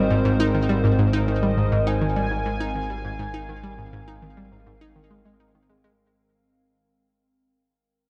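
An up-front analog pluck carries the riff in this six-second stretch of cosmic, expansive space music, its fast attack and short decay giving a bright, round edge to tones spanning Ab2 to Eb4, with chorus and delay trailing each note. Beneath it, a nasal analog drone holds a steady Ab1 in the bass, its pulse-width modulation lending evolving movement. An evolving wavetable pad sustains chords from Eb3 to F5, its detuned, warbling, vintage character morphing under chorus and its own built-in reverb. Higher up, a mellow horn-like synth lead sings a melody between Eb5 and Ab5 with soft attack, vibrato and a filter sweep, carrying analog chorus and delay before it drops out at 5.4 seconds. The sequencer-driven groove moves at 102 BPM in a straight 4/4, resting on Ab major and tuned to A4 = 439 Hz. A moderate plate reverb and a dark, warm production cast a spacious glow over the passage, which fades out across its whole length as a section cut from a longer piece.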